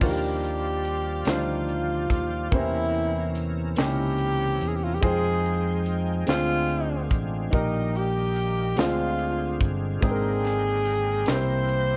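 A slow, straight 6/8 pulse at 48 beats per minute, counted in dotted quarters, carries this jubilant, soulful gospel excerpt in Eb major. A crisp fusion drum kit with a high-tuned snare, punchy kick, hi-hat and crash cymbal sits in an airy, polished studio room. Alongside it, a fingered electric bass sounds round, amped and up front, and a jingly, band-limited tambourine rings in the background from 0.4 seconds. A woody upright piano with long sustain supplies the accompaniment, while a bright tonewheel organ holds full, lightly overdriven chords behind it, with key click, chorus vibrato and a slow rotary speaker. Over the top, a breathy tenor saxophone leads the melody in jazz style, with scooped notes, vibrato and a smooth top. The harmony moves through rich chords such as Ebmaj9, Fm9 and Abmaj9#11, and the recording carries light reverb and the warbly pitch drift of worn cassette tape.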